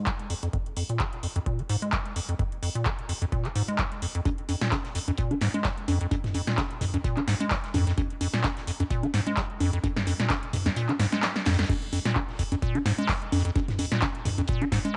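Acid house cut from a longer piece, hypnotic and raw, where a squelchy, resonant square-wave acid bass riff runs up front through cassette tape and tape echo under a filter sweep until the drop at 11.7 seconds, driven by a deep analog kick that drops out between 10.8 and 11.7 seconds, a punchy analog drum machine with metallic hats, congas, claps, toms and crash, a drum fill just before the drop, and a very quiet, dry, damped 70s kit adding snare and hi-hat from 4.3 seconds, all wrapped in light reverb and the grit of a home cassette recording.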